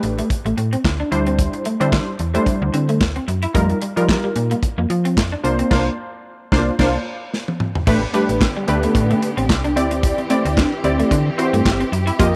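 A detuned, warbling polysynth with chorus drives this funky, late-night early-eighties boogie funk cut at 111 BPM with a 16th-note swing, backed by a snappy, metallic FM slap bass, a twangy, slightly broken-up electric guitar riff with ensemble chorus, and a punchy studio drum kit with bright cymbals and handclaps whose fill at 7.3 seconds closes out a band accent, before a lush, distant string section enters at 7.9 seconds to hold sustained chords in a small, lightly reverberant room.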